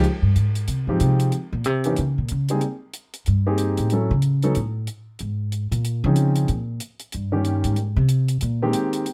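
Light reverb gives this short cut from a longer piece a close, intimate sound, with the bass and piano both placed up front. It is a playful, swinging jazz piano trio moving at a brisk clip, with a light swing on the eighth notes. The upright bass takes the solo throughout, its pizzicato lines woody and growly on steel strings, moving in a compact low register. The baby grand piano carries the melody in a warm, natural tone, while a dry acoustic hi-hat ticks along quietly underneath. The harmony moves through rich extended chords such as Fm9, Abmaj9 and Dbmaj9, with brief chordless gaps before settling back on Abmaj9 at 7.8 seconds.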